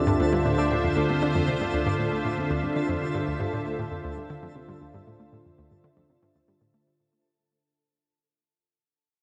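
Ambient, sequencer-driven space music in D minor at 117 BPM, this hypnotic, mysterious fragment of a longer piece sits on a Dm7 chord and fades out across its full 6.9 seconds while a filter sweep moves over the arpeggiated synth sound. Up front, a resonant, evolving pad with chorus holds sustained chords, joined at 0.1 s by a round, detuned analog pluck with chorus and delay playing a low riff. Beneath them sit a very quiet, mellow analog drone on D2 and a twinkling granular texture with octave-up shimmer, while a fingerpicked Celtic harp rings out delayed arpeggios until 5.4 s, all bathed in a wet plate reverb.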